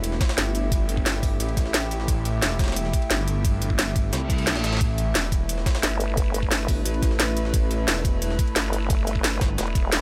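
Mechanical and aggressive, this dark technical drum and bass excerpt is driven by a knocking electronic kick, a cracking snare and crisp hats up front, with a gritty, pitched-up jungle sampler-style kit overdriven in the background, while a swirling, thick phased detuned saw bass anchors the low end beneath an eerie metallic drone that pumps under sidechain and sits in its own reverb. A reverse cymbal sounds at 4.3 seconds as the kick briefly drops out, and from 5.8 seconds a nasal, resonant vowel-sweep wobble bass joins up front.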